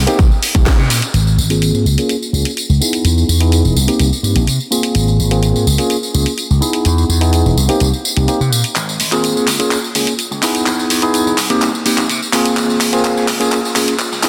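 A bright, amped slap bass anchors this feel-good filtered disco house passage at 126 BPM in Ab major, spanning E1 to C3 with a punchy attack that pumps against the sidechain and moves through high- and low-pass filtering. A clean tine electric piano sits up front through a combo amp, its medium tremolo and phaser adding shimmer as it voices lush chords such as Cm7, Ab69, Db6 and Emaj7 between Bb3 and Ab4, with its own sidechain pumping and low-pass filter. The layered house drum kit brings a cracking snare, handclaps, hi-hat and tambourine, re-recorded in a small room and placed up front, with sidechain pumping on the percussion and hats. A punchy electronic kick is heard only briefly, from 0.2 to 0.8 seconds. Filter sweeps run through the whole passage, and from 8.8 seconds a build-up and drum fill carry the joyful groove forward. A moderate, lush hall reverb opens up the space, and the dense, heavily limited modern master keeps the sound loud and tight.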